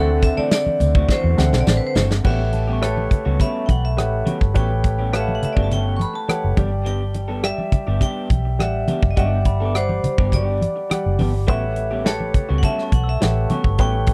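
A straight 4/4 groove at 104 BPM carries this lush, smooth 1970s-style soul excerpt, where a ringing hard-mallet vibraphone with slow motor vibrato carries the melody over intimate concert grand piano chords and a slightly broken-up, chorus-soaked electric guitar riff, anchored by a dark, round, foam-muted fingered bass and a tight, up-front acoustic drum kit that enters at 0.2 s. Soft, damped congas sit in the background, and a faint jingly tambourine drops out at 2.1 s during an early drum fill. A bell-like glockenspiel glints in from 2.5 s, all in a dry, close studio sound.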